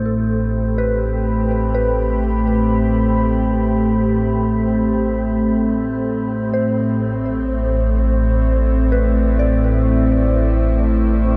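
Spacious and melancholic, this ambient fragment, cut from a longer piece, drifts at 63 BPM in A minor, resting on a single Am11 chord throughout its 11.4 seconds. Up front, an evolving wavetable pad morphs through detuned sustained chords with chorus and its own reverb, while a deep, ominous drone rumbles and warbles beneath on a low A. In the background, a soft FM synth bell traces gentle arpeggios through chorus, phaser and delay, and an ethereal glass harmonica holds a smooth, glassy tone, all bathed in a huge, wet reverb.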